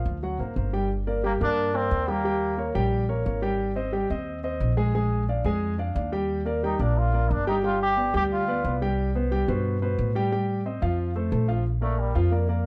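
A concert grand piano with audible action noise and long sustain opens this sophisticated, sunny Afro-Cuban jazz excerpt, joined at once by a woody, thumpy pizzicato upright bass on gut strings, while a nasal, straight-muted trombone with vibrato enters in brief phrases from 1.3 seconds and takes a short solo at 11.7 seconds, all in light reverb with a dark production.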